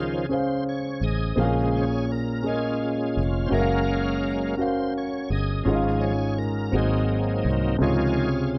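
Slow gospel in Db major at 56 BPM in 6/8, reverent and uplifting, where a bright, shouting tonewheel organ with a slow rotary speaker, light overdrive and chorus vibrato takes the solo over sustained chords, backed by an intimate grand piano with audible action noise and long sustain and a round, foam-muted fingered electric bass, the trio heard in a dry, close 1970s-style studio sound as the harmony moves from Dbmaj7 through Bbm7, Gbmaj7 and Ab7 back to Dbmaj7.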